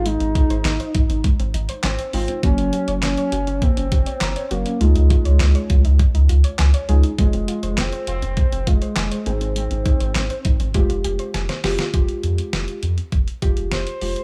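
Cool and melancholic, this short synth-pop passage moves at 101 BPM in a straight 4/4, set in F minor and tuned slightly sharp to A4 = 444 Hz. A deep, rounded analog bass and a clean 12-bit drum machine sit up front, the kit's thumpy kick and fat snare joined by handclaps and hi-hat from 0.1 seconds. Over a chord cycle of Ab, Gb, Dbadd9 and Fm, muted felt-like synth keys add an intimate, dusky accompaniment with chorus, while a soft pluck plays arpeggios in the background through chorus and tape echo until 11.9 seconds. The smooth, expressive lead carries the melody with vibrato and portamento, its sawtooth tone mellowed by chorus and tape echo. A drum fill at 11.3 seconds leads into a brief second section, and the whole is a dry, gritty hardware recording with transformer saturation and little reverb, cut from a longer piece.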